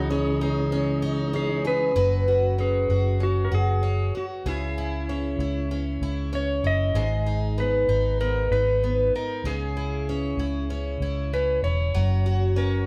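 A live, in-the-room sound with moderate large studio reverb frames this wistful, tender acoustic pop excerpt at 96 BPM in 4/4, with a light sixteenth-note swing and chords moving from C#madd9 through F#sus4, C#m and G#m. Up front, a shimmering, octave-doubled picked twelve-string acoustic guitar provides the accompaniment, and a dark, round, punchy, foam-muted fingered electric bass anchors the low end. A clean, warm lap steel guitar carries the melody on slide, while a mellow tonewheel organ with chorus vibrato, key click and fast rotary speaker holds sustained chords only until 1.9 s.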